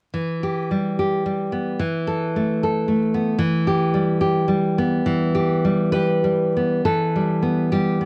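Romantic solo classical guitar in E minor, passionate and intimate, drifting in a rubato 2/4 at 62-78 BPM, as an up-front, warm, fingerpicked nylon-string guitar with audible finger squeak moves from Em to Esus4 at 1.8 seconds and back to Em at 3.4 seconds before turning to a new idea at 6.8 seconds, all captured in a dry, close 1970s-style studio sound with light reverb and vinyl crackle in this brief cut from a longer piece.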